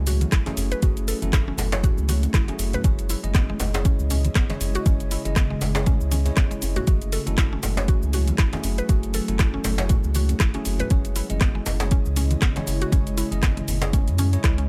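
A deep, up-front electronic kick with studio reverb drives this hypnotic afro house excerpt, set over an afro-pop kit of handclaps, rim click, shaker and metallic hats with a swung sixteenth-note feel. Low-tuned congas played with soft hands sit very quiet in the mix, while a deep djembe with metal rattles stays in the background, both carrying the sound of a small room. Beneath them a round, sine-like sub bass holds the low end with a mellow, sustained tone. A woody, percussive FM pluck plays arpeggios through chorus and analog delay, and a bright, bell-like tine electric piano adds clean stabs with its own delay. An ethereal, airy pad of detuned sawtooth and triangle voices sits behind everything with a slow attack, washed in ensemble chorus, reverb and 12-bit sampler grit, as the harmony alternates between F#m9 and C#m/F#. Sidechain pumping breathes through the pad, keys, pluck and bass, and the whole recording has a dry, gritty hardware character with transformer saturation.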